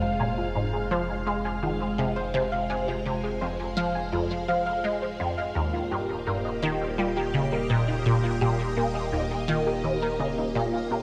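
Lush, vintage string-machine chords open this hypnotic, expansive stretch of ambient, sequencer-driven space music in F minor, sitting up front with a soft attack, long release, phaser and ensemble chorus. Beneath them a deep sine sub bass holds the low end, while a gentle, mellow pluck traces arpeggios in the upper register through chorus and delay. At 0.2 seconds a juicy, squelchy blip pluck joins with a resonant riff, bright and forward, its detuned sawtooth tone run through phaser, ensemble chorus and delay. The music moves at a steady 84 BPM in straight 4/4, shifting from Fm to Ebadd9 at 5.6 seconds. A wet plate reverb and a cassette-tape character give the whole passage a soft haze, and it is cut from a longer piece.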